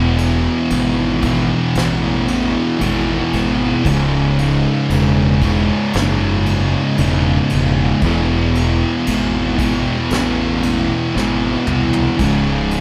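Sludgy and ominous, this short stoner and doom metal passage, cut from a longer piece, crawls along at 58 BPM in a straight 4/4. Three fuzz-drenched, picked electric guitars sit back in the mix playing the riff, two of them dark and the third brighter and double-tracked, all heavily distorted. Up front, a fingered electric bass carries the low end with a round, overdriven fuzz tone that mixes a direct signal with an amp. A brushed acoustic drum kit enters at 0.2 seconds, sitting low with dark cymbals, a fat snare and a tight kick, and it plays a fill from 11.1 to 12.2 seconds. The harmony moves from E to C#m and back to E, landing on a C#5 power chord at the close, and light reverb gives the sense of a band playing live together in one room.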